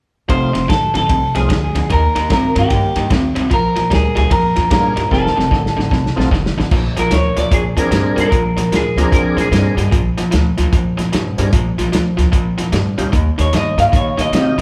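Recorded as a band playing live in one room with moderate large studio reverb, this soulful, gritty electric blues shuffle at 150 BPM, cut from a longer piece, features a twangy, slightly broken-up lead guitar through a small old amp carrying the melody with spring reverb before pausing and returning at 13.4 seconds, while a bright overdriven guitar plays the riff, a woody, thumpy upright bass holds the low end, a dry, muffled soul drum kit with dark cymbals plays a fill from 5.1 to 6.7 seconds, and a full tonewheel organ with slow rotary speaker, overdrive and chorus vibrato adds accompaniment.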